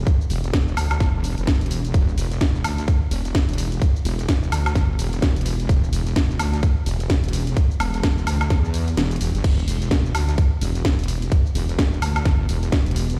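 A swung 128 BPM groove in 4/4 drives this bouncy, swaggering bass house excerpt in E minor, with a tight, up-front electronic kick that briefly drops out between 9.0 and 9.4 seconds. A garage drum kit fills in cracking snare, hi-hat, ride, crash, shaker and woodblock, while a heavy, detuned sawtooth wobble bass sits up front between E1 and E2, saturated, compressed and sidechain-pumped. The mix feels dry, like a big sound system in a bare stone room.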